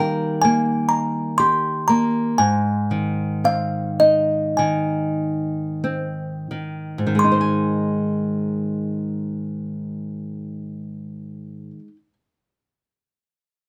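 Set in a moderate studio reverb, this short lullaby excerpt for children has a sleepy, innocent mood in a straight 4/4 that slows down through its first 7.2 seconds. Up front, a delicate, tinkling music box plays the melody in a high register, airy and slightly out of tune. Beneath it, a small, fingerpicked nylon-string guitar provides accompaniment over a simple move from Eb to Ab, with both parts running through to around 12 seconds.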